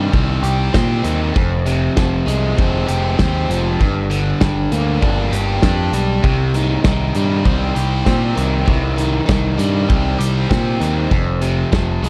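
Indie rock at 98 BPM in C minor, cool and restless, cut from a longer piece: a biting, bright, double-tracked overdriven guitar riff sits up front over a growling picked bass with its own overdrive and a loose acoustic kit with a punchy kick, medium-tuned snare, hi-hat and a pumping room sound, all fairly dry as the chords move from Cm through Fmadd9 and Gm before landing on F5 at 11.1 seconds.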